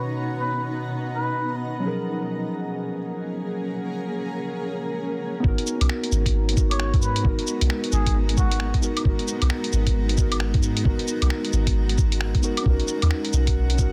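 Ghostly and nocturnal, this future garage fragment moves at 133 BPM in G# dorian with a swung sixteenth feel, and it is cut from a longer piece. It opens on muted, felt-like synth keys, soft and intimate with chorus and tape echo, beneath a blurred, granular cloud pad whose bright, evolving chords breathe with sidechain pumping. A glassy texture of drifting overtones hovers far in the background until 5.4 seconds, while a cup-muted trumpet offers veiled, jazz-style phrases with light vibrato, trailing tape echo, at the start and again around 6.7 seconds. At 5.4 seconds the harmony settles onto G#m7 as a deep, round 808-style bass and a thumpy, pitched-down electronic kick arrive, joined just after by a lo-fi sampler-style kit of cabasa, claves, finger snaps and hi-hat, its hats and percussion filtered dark and its snare softly clipped into a tape-warm haze. The keys, pad and bass all pump with sidechain under light reverb, and the glass texture returns briefly as the chords move back to Bmaj7 near the close, all within a dense, heavily limited master.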